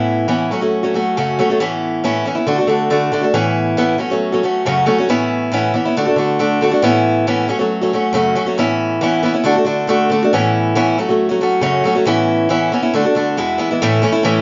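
Rock with a nostalgic, jangly mood at 138 BPM in A major, this 14.4-second passage from a longer piece features a single picked, boxy old ladder-braced acoustic guitar, up front under light reverb in a live room with a rolled-off top end, cycling through Aadd9, F#m and D before turning to E at 13.4 s and landing on A at 13.8 s.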